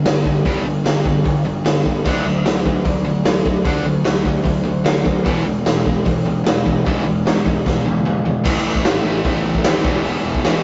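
Gritty, punchy garage drums sit up front in this rowdy, energetic punk rock excerpt, alongside a crunchy overdriven guitar, a sludgy distorted guitar and a growly fuzz bass that stay in the background through G5, D and E chords, until a drum fill at 7.7 seconds leads into a new section at 8.5 seconds over A and E, all caught in a rough rehearsal-room sound with light reverb.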